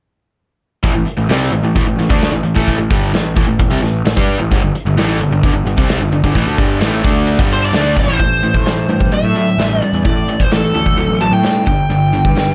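Classic rock with a gritty, driving mood, cut from a longer piece and set in light reverb. An up-front acoustic drum kit with a boomy kick and a medium-tuned snare pushes two background riff guitars, one bright and distorted, the other a warm, overdriven semi-hollow, over a punchy, fuzz-laden picked bass, as the chords move from G5 to Am7 at 8.2 seconds. At 7.5 seconds a lead guitar through a small cranked amp steps to the front with a wah-colored melody.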